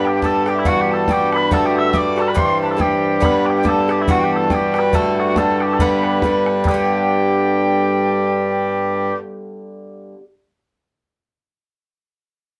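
A cheerful, bright Celtic polka bursts in at once, with mellow small bagpipes carrying a sweet, continuous melody up front while a reedy mid whistle plays a second line above it. The whistle's tone is airy and metallic, with vibrato, a crisp attack and a touch of chiff. Underneath, an Irish bouzouki picks out the harmony on its double strings, its acoustic sound warm with a metallic ring. A damped, tight bodhran joins at 0.2 seconds, sitting close in the mix, and drops out at 6.9 seconds as the tune moves into a new strain. The swung, bouncy lilt moves through a simple cycle built on G, E minor, D and C. The pipes and whistle fall away just before the end, leaving the bouzouki to carry on alone until the clip is cut off at 10.2 seconds, all within a moderate small-room ambience.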